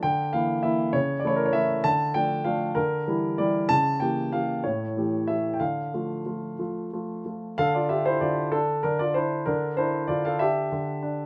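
A warm, up-front grand piano sits in light reverb, playing alone through this brief 11.3-second passage from a classical-period sonatina in D minor, tuned to A4 = 441 Hz. The mood is elegant and serious, moving at a slow 60-66 dotted-quarter beats per minute in 6/8 with a rubato feel, and the piano spans A2 to A5 as harmonies such as C#dim7 and A7 lead back to D minor. At 7.6 seconds the opening material starts again, now over a Dm11 chord.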